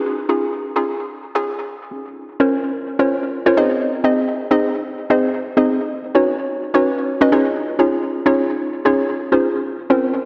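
A hollow square-wave pluck carries this euphoric, summery pop fragment on its own from 0.0 to 10.2 seconds, sitting up front in the mix with a bouncy, mellow character. Its fast attack and decaying filtered tone are layered with a touch of noise, and chorus and tape echo thicken each note as it rings. A short build-up opens the piece before the drop arrives at 1.9 seconds, with the harmony moving through Dbadd9, Bbmadd9, Ab and Cbadd9 chords in a straight, steady 4/4. The lush hall reverb soaks the sound, giving the mix a dreamy feel, while a high-pass filter keeps the low end light. The piece is cut from a longer track, so it begins and ends mid-flow.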